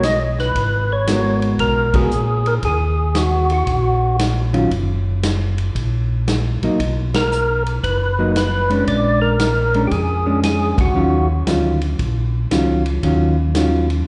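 Bluesy and smoky, this soul jazz organ trio excerpt swings at 115 BPM in Eb minor, with a fat, lightly overdriven tonewheel organ carrying the melody through slow rotary speaker and slapback echo until 11.3 s, while a mellow, round second organ with key click holds down the bass. A dark, clean hollow-body jazz guitar, picked and touched with slapback echo, comps beneath, and a vintage drum kit with a punchy kick, medium-tuned snare and dark cymbals keeps time as the band hits accents at 1.9, 7.1 and 10.7 s over chords moving from Abm9 to Ebm9. The sound is that of a live gig heard through the venue's PA, with club reverb, a lush hall tail and a rolled-off top end.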